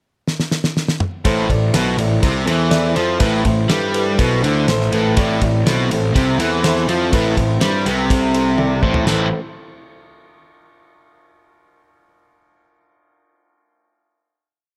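A dry 70s drum kit with a fat snare and tight kick drives a straight 4/4 rock groove at 123 BPM, opening with a fill before this short, swaggering classic rock piece in A minor kicks in at 1.2 seconds with a bright distorted electric guitar riff, a hollow-body overdriven guitar tucked in the background, and a fuzzy bass that doubles the riff in driving eighth notes, over a dark baby grand piano pulsing close-voiced eighth-note chords and a very quiet, flute-like tonewheel organ holding chords with slow rotary swells, before another drum fill at 8.6 seconds leads to a final chord ringing to 11.0 seconds in light studio reverb.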